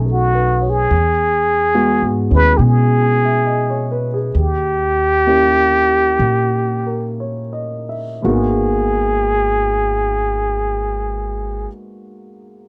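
Swung eighths in a slow 4/4 at 56-72 BPM, easing down between 0.9 and 8.2 seconds, carry this smoky, wistful jazz ballad excerpt in G# minor, where a breathy, close-miked trumpet with plunger-mute wah-wah and vibrato sings the up-front melody over a concert grand piano with deep bass and a woody pizzicato upright bass, in a dry, close 1970s-style studio sound, the piano ringing on alone after the trumpet stops at 11.7 seconds.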